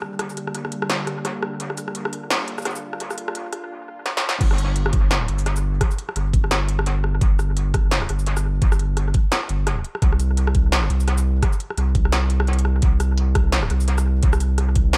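This half-time drum and bass excerpt has a mostly dry, echo-heavy mix with a high-pass filter, giving it a heavy yet spacious mood. It opens with a tense, nasal drone that sounds bowed, built from detuned sawtooth unisons with a noise layer, vibrato and its own reverb, holding a single sustained minor chord under a filter sweep and sidechain pumping. An industrial drum kit plays throughout, with a clanging snare, smooth hats, rim clicks, shaker and crashes, a tape-toned character, small room reverb and dub echo, and a short fill just before the drop. At 4.4 seconds the drone stops and the drop arrives: a deep, thick, saturated sub bass with a triangle tone and fast attack sits up front, and an overdriven, layered electronic kick with a knocking punch joins it. From there the section runs on bass, kick and kit alone, with the kick dropping out at 14.8 seconds just before the piece cuts off at 15.0 seconds.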